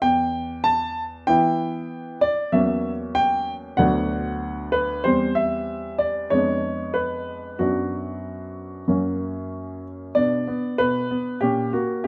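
A smooth, vintage-toned grand piano plays alone, up front and closely miked in light reverb, in this graceful, playful classical-period sonatina at 95 BPM in 4/4 and B minor, cut from a longer piece: it opens on E minor, passes through F-sharp seventh and diminished harmonies to settle on B minor, and a new section begins at 10.2 seconds.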